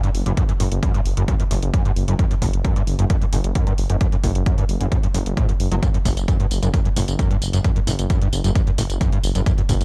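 A screaming, squelchy acid line drives this short cut from a longer piece of peak-time techno, its resonant sawtooth riff running from F#2 to F#3 with a filter sweep, bright distortion, ensemble chorus, cassette tape colour, sidechain pumping and analog delay. The mood is intense and industrial, moving at 132 BPM in a straight 4/4 in F# phrygian. Beneath it a thick, menacing, detuned saw bass sits on F#1 from 0.1 seconds, beating and sustained, up front and pumping with sidechain compression. The electronic kick drum lands at 0.4 seconds, an analog, punchy hit re-recorded in a large room and placed prominently. An overdriven, layered electronic hi-hat and tambourine sits lower in the mix. The overall sound is dry and gritty, with the hardware edge of transformer saturation and cassette tape.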